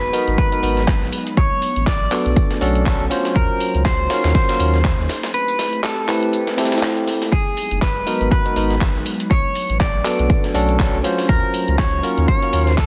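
A punchy, tape-warm electronic kick sits up front, entering at 0.4 seconds and anchoring this smooth, late-night deep house excerpt with a swung groove. Beneath it, a deep sine-and-triangle sub bass with an added octave holds full, mellow notes, pumping against the kick along with a barky tine electric piano whose lightly overdriven stabs, played through a combo amp, trail off in tape echo. A bright, clean picked electric guitar carries the melody, roughened by vintage 12-bit sampler grit and tape echo, while an airy, breathy pad with a slow attack and detuned, warbling chorus sustains chords that drift between minor seventh shapes. The rhythm bed layers a house kit's handclaps and hi-hats, with soft clipping on the snare, over a gritty, compressed soul sampler-style kit of hi-hat, snare and tambourine tucked in the background, all re-recorded in a large room, and a grainy, close egg shaker adds a faint acoustic shimmer. 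Light reverb and digital ambience surround a dense, heavily limited modern master.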